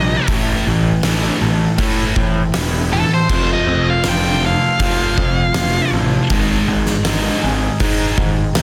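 Angsty and dark, this brief cut from a longer quiet-loud alternative rock piece moves at 80 BPM in a straight 4/4 over Am, F and Ab, with a dark octave-fuzz lead guitar carrying the melody with tape echo until 5.9 seconds, a twangy, slightly broken-up guitar through a small old amp playing arpeggios with spring reverb and tape echo, bright distorted and scooped high-gain guitars riffing in the background, a growly, punchy fuzz bass, and an oversized low-tuned drum kit entering at 0.3 seconds up front with a fat snare, punchy kick and dark cymbals in a pumping stone room, all in a dense, heavily limited modern master.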